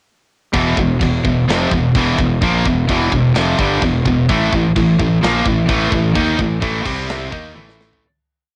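Heavy metal with an aggressive, relentless drive, built on a bright, up-front high-gain guitar playing a picked power-chord riff over a second distorted guitar set in the background, a growly, punchy fuzz bass doubling the riff in driving eighth notes, and a tight kit with china and crash cymbals, a medium-tuned snare and toms in a metal half groove, all captured in a lightly reverberant home cassette recording that fades out from 6.2 seconds and closes on a drum fill at 7.6 seconds.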